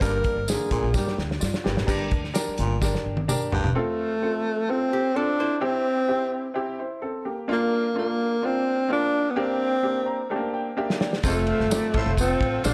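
A warm, up-front alto saxophone with vibrato and tape echo carries the melody of this joyful, uplifting 1960s-style soul cut at 128 BPM in F major, over a clear, polished upright piano that plays throughout. A growling baritone saxophone riff, woody pizzicato upright bass, a tight soul drum kit with dark cymbals, and a jingly tambourine drive the opening, drop out around 3.7 seconds, and return near the end alongside a mellow, vintage horn section, which also makes a brief early appearance. In between, a clean, hollow-body archtop guitar plays a short picked riff at 4.9 seconds, and light small-room reverb frames the recording.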